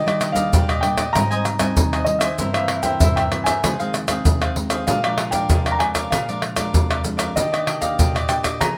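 Samba and choro in Eb major at 96 BPM, this bittersweet, yearning excerpt sets a dark, mellow baby grand piano melody over crisp picked cavaquinho and fingerpicked nylon-string guitar with audible finger squeak, while up-front maracas, pandeiro, tamborim and a tight surdo played with hard hands enter at 0.1 s, moving through Ebmaj7, Abmaj7, C7/G, Fm7 and Bb7 back to Ebmaj7 in a moderate studio reverb.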